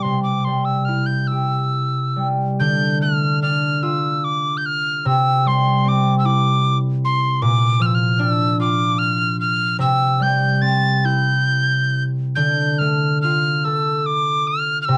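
A bright wooden whistle and a concert harp open together on a C chord, the whistle's airy, chiff-edged tone sitting close and up front with a slightly unsteady vibrato and tongued notes between C6 and A6. This is a haunting, longing Celtic slow air in D minor, moving freely in 6/8 at roughly 45-52 BPM, with the fingerpicked harp ringing low beneath it through Dm, C and Bb changes. Both parts carry the grain of a home cassette recording in a moderate studio reverb, and the passage is cut from a longer piece.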